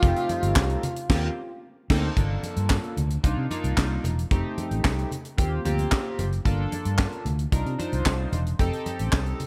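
Early-eighties boogie funk in G minor at 112 BPM with a funky, late-night mood, where a breathy, intimate alto saxophone with slapback echo plays up front only until 1.6 s, a glossy chorused polysynth with filter sweeps and pulse-width movement supplies sustained chords, a bright, growly fingered electric bass holds the low end, a tight funk drum kit with a high-tuned snare, handclaps and crash cymbal sits forward, very quiet thick-skinned congas add texture, and the band hits a shared accent from 1.1 s before settling into a Gm9 to Cm11 groove under light reverb.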